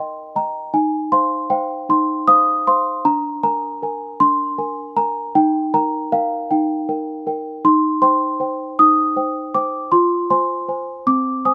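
A small celesta plays alone, bell-like, delicate and mellow, sitting up front in light reverb for this fragile, wistful classical lullaby excerpt in a gentle 6/8 at 52 BPM, moving from Eb major into C minor at 7.6 s before settling on an F minor chord near 9.9 s, all tuned slightly low to A4 = 439 Hz.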